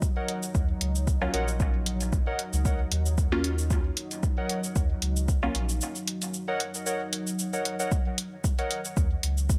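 A nocturnal, hazy dub techno excerpt at 114 BPM in Eb minor opens on an Ebm7 with a dark, full-bodied ambient pad swathed in chorus and reverb, muted, detuned chord stabs with phaser and dub echo, an up-front overdriven electronic kick and gritty electronic cabasa and hi-hat. Warbling, nostalgic lo-fi synth keys with chorus and echo and a soft, round sub bass soon join. The groove is swung, with the pad, stabs, keys and bass pumping, until the kick drops out at 5.8 seconds and returns at 7.9 seconds, shortly after the stabs end.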